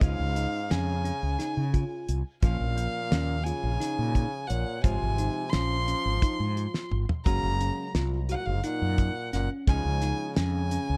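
Driving straight eighths at 174 BPM in 7/8 set up this bright, intricate progressive band fragment in Db major, where a dry, fat-snared 70s drum kit and an up-front fretless electric bass anchor the groove, with a short drum fill at 6.7 seconds. A dark, woody violin bowed sul tasto carries the melody through tape echo, and a clear, punchy trombone adds a second line in plate reverb. In the background a bell-like tine electric piano plays arpeggios and a hollow-body archtop guitar picks clean accompaniment, both bathed in plate reverb over a Dbadd9, Bbm, Fm/Ab, Gb progression within a dark, warm mix.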